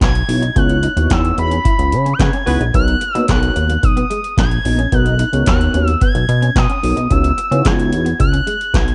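A feel-good, danceable slice of early-eighties boogie funk, built on an up-front electro analog drum machine with a deep kick, punchy snare, metallic hats and handclaps, and a glossy chorused synth bass with a filter pluck, over a dark production with little reverb. A smooth, expressive sawtooth synth lead carries the melody with vibrato and slapback echo, while round, full-bodied synth brass sustains the harmony from C#m11 to Bmaj9. A slightly broken-up guitar riff sits in the background, and a tight, mellow horn section adds a brief octave-doubled line at 2.2 seconds within a band accent.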